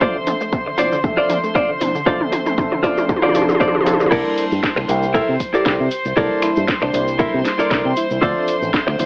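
Groovy and cosmic, this nu-disco cut moves at 117 BPM with a light 16th-note swing over Dm7 and C13. A drum fill and build-up carry punchy overdriven electronic kick, a house kit with cracking snare and bright hats, a reedy tremolo electric piano, distant earthy chamber strings, a clean compressed guitar riff bathed in lush chorus up front, and background sawtooth pluck arpeggios that stop at 4.0 s. At the drop at 4.1 s a bright envelope-filtered fingered bass enters, and from 5.5 s a soft, round, octave-layered synth lead with tape echo adds a brief melody, all heard through a lo-fi cassette and AM radio sheen with pumping sidechain and moderate reverb.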